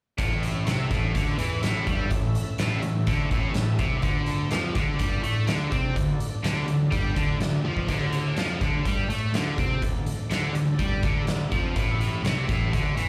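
An oversized, low-tuned acoustic drum kit drives this driving, swaggering blues rock and southern rock fragment, its boomy kick, fat snare and dark cymbals sounding saturated and gritty up front, with a fill at 7.6 seconds. A bright, double-tracked distorted guitar riff with slapback echo and a fuzzy, overdriven picked bass move from A to D5 at 4.0 seconds and back to A at 11.8 seconds. Meanwhile, a full, lightly overdriven tonewheel organ holds percussive sustained chords in the background through chorus vibrato and a slow rotary speaker, all captured as a live gig through the venue's PA with club reverb and a pumping room on the drums.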